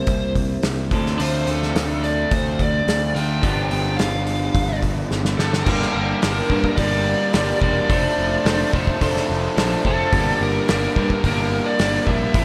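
A dark, overdriven lead guitar melody with analog delay opens this moody, bittersweet indie rock excerpt at 108 BPM, alongside a twangy, lo-fi riff from a guitar through a small old amp with slapback echo, as a round fuzz bass and a loose drum kit with a punchy kick and dark cymbals arrive almost at once. A raw, bright garage guitar riff with overdrive, subtle chorus and slapback echo joins in the background at 1.2 seconds, and a drum fill leads into a shift from C7, Dm7 and G7 toward Gm at 5.7 seconds. There a very quiet, flute-like tonewheel organ with key click and slow rotary speaker adds sustained chords, all set in a lush hall reverb for a big arena sound.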